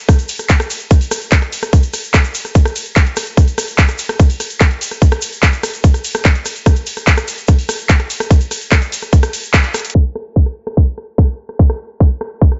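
Trance at full drop, hypnotic and intense, built on a tight, up-front electronic kick and a layered techno kit of warm hats, handclaps, rim clicks, ride and crash cymbals, with a grainy tube shaker in the background until 9.9 seconds; a band accent at 9.5 seconds and a drum fill at 9.7 seconds then give way to a filter sweep over a low-passed digital ambience.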